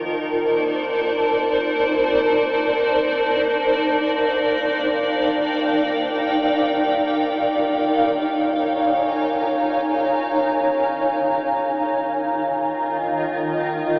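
Serene and weightless, this ambient fragment from a longer piece is carried entirely by a single up-front granular cloud pad, blurred and detuned with slow attacks and long releases, drifting through Bbmaj7/Eb, Ebmaj7, Eb9sus4 and F7sus4/Eb under diffuse delay and a huge reverb, all filtered through a cassette-worn, telephone-thin sound.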